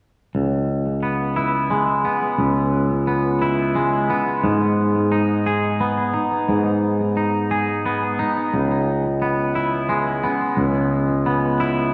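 A twangy, clean electric guitar sits up front, fingering brooding, melancholic arpeggios in a rock waltz at 88 BPM over C#m7 and G#m, its spring reverb, digital delay and slapback echo blooming into a lush hall for a big arena sound in this brief fragment cut from a longer piece.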